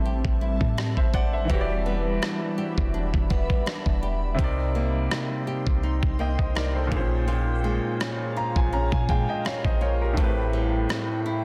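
A clear, intimate baby grand piano, a cloudy granular pad with its own reverb, a fingerpicked flamenco guitar arpeggiating through delay and a deep, boomy 808-style bass all open this late-night, moody contemporary R&B fragment, joined at 0.2 seconds by an up-front, gritty, sampler-style drum kit with a thumpy kick and rim clicks, as minor-seventh chords drift from Am7 through Em7, Cm7 and Bbm7 and the piano adds a fill from 8.0 to 10.2 seconds within a dense, heavily limited modern mix.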